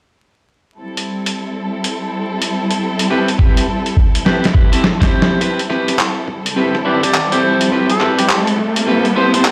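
Gritty and playful, this glitch hop excerpt swings loosely in 4/4 and opens on a lush Am7 from a bowed string section, its vibrato and portamento roughened by vintage 12-bit sampler grit and sidechain pumping. A boom bap sampler-style kit of handclaps, hi-hat and a medium-tuned snare joins at 1.0 seconds, compressed, pitched down and tape-saturated, sitting up front with a small-room character. A clean, picked electric guitar adds stabs with delay and pumping from 3.1 seconds, soon followed by a thumpy electronic kick that lands heavily in the mix. After a drum fill, a build-up begins at 5.4 seconds, an electronic riser creeping in from the background as a harmonica takes a jazzy solo melody with light vibrato, scooped notes and a filtered, echoing tone. The whole piece sounds as if played through a big sound system in a bare stone room, coated in vinyl crackle.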